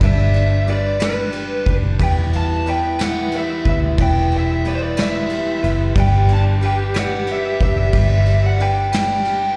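Heard as a live gig through the venue's PA with a recital hall's reverb, this excerpt of a dramatic, melancholic six-eight pop ballad moves at 60 BPM in 6/8 over G, Em and back to G. A smooth, overdriven lead guitar carries the melody, while a distant French horn section with light vibrato plays a shadowy second line, both touched with slapback echo. In the background a double-tracked, picked steel-string acoustic guitar and a clean, compressed semi-hollow electric guitar playing arpeggios share that echo, over a round, foam-muted electric bass sitting up front and a vintage brush kit of kick, snare and ride with a rolled-off top that stops at 9.4 seconds.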